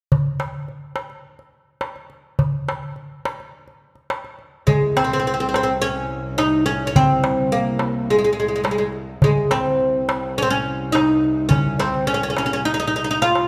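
A crisp, close metal-shell darbuka opens alone at 0.1 seconds, setting a hypnotic, steady 4/4 pulse for this Arabic maqam ensemble piece, cut from a longer performance. At 4.7 seconds a bright, woody fretless oud takes the soulful melody up front, while a bowed cello section holds a low, earthy drone with light vibrato beneath it. The darbuka plays a fill at 13.2 seconds, and a generous recital-hall reverb surrounds the ensemble.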